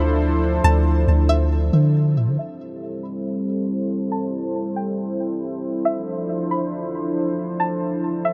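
Hip hop excerpt at 138 BPM with a half-time feel in A minor, melancholic and ethereal, where a smooth, detuned analog pad holds mellow chords up front and a string-like, twangy resonator pluck carries a high melody through chorus, delay and a low-pass filter. A deep, round 808-style bass sits up front only until 2.4 seconds, after which a filter sweep runs to the end at 8.3 seconds. The chords move from Dm9 to Am7 and back to Dm9, set in light reverb and digital ambience.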